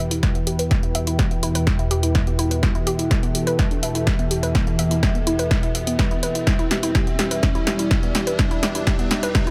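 A punchy, tape-colored electronic kick sits up front in this dark, dramatic melodic techno excerpt at 125 BPM in E minor, tuned to A4 = 435 Hz, joined by an analog drum machine's snare and hi-hat in a build-up with a drum fill and a riser that creeps in from 0.4 s. A woody, wave-folded pluck spins chorused arpeggios with tape echo over a lush, detuned unison pad with phaser, an evolving analog drone and a warbling, nostalgic lo-fi pad with ring modulation, all pumping against the kick under a filter sweep. The harmony moves from Em to a rootless C at 6.5 s, and the mix sits in light reverb.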